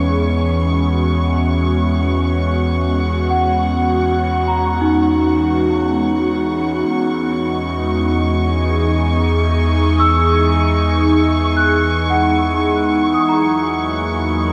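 An airy, breathy pad with chorus and phaser opens this peaceful, weightless ambient piece in free time, joined from the start by delicate, bell-like celesta arpeggios through delay, a round sine sub bass on E2 and a veiled, distant muted violin section, while a faint, reedy harmonium drone enters at 6.9 s, the whole mix set in a wet cathedral reverb as the E lydian harmony moves from Emaj9 to Emaj7 and D#m/E.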